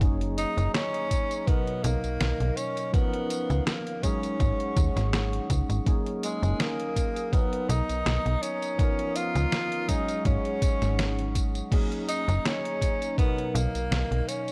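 Nostalgic and faded, this vaporwave clip sets a breathy, whispered tenor saxophone up front with tape echo and scooped notes over a barky, slightly out-of-tune tine electric piano with analog chorus, a dark, warbling tape-like pad in the background, a snappy slap-like FM bass with tube saturation, a thumpy electronic kick, and a detuned 8-bit drum machine of crash, hi-hat, snare and tambourine, all moving through lush jazzy chords with a gentle swing and a light-reverb cassette sheen.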